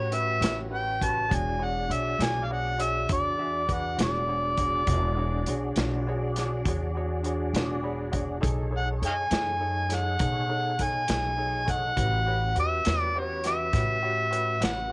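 Gritty and swaggering, this slow blues in 12/8 is a short cut from a longer piece. An amplified, overdriven harmonica carries the melody up front, its jazz-style solo full of scooped notes, tongue slaps and light vibrato. A woody, thumpy upright bass with gut strings sits up front as well, while a lo-fi vintage kit with a muffled, rolled-off top, a tight kick and a medium-tuned snare keeps time in a small room. A clear, polished upright piano with long sustain accompanies and slips in a brief fill from 7.5 to 8.4 seconds. In the background, a clean tonewheel organ holds sustained chords through chorus vibrato and a slow rotary speaker, moving with the band from A13 to E13, then B13, and back to A13, all under light reverb.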